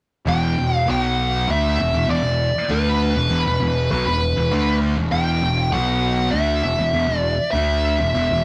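Sludgy and hypnotic, this short metal fragment in E minor moves at 99 BPM in a straight 4/4, with a dark, compressed fuzz lead guitar up front carrying the melody through wah, distortion and tape echo from 0.3 to 8.4 seconds. Beneath it, two thick fuzz guitars pick out the riff, one sitting very quiet and the other run through a distortion effect, while a growling, punchy bass with overdrive sits bright and up front. The chords move from Em to B5 and E5, and moderate reverb gives the whole thing the rough feel of a rehearsal-room recording.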